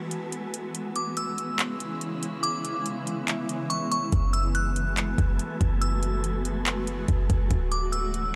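Atmospheric cloud-rap with an ethereal, melancholic mood and a half-time feel, built on a blurred, slowly evolving granular pad with its own reverb and sidechain pumping, beneath an airy, breathy wind-like noise texture. An electronic R&B drum kit with a soft kick, metallic hats and handclaps sits up front, while a crystalline FM synth bell with chorus and digital delay carries a high, warbling melody from 1.0 seconds. At 4.1 seconds a deep, boomy 808-style sine bass enters, clean and decaying, and the chords move from F#m11 and C#m7 to a closing Dmaj7.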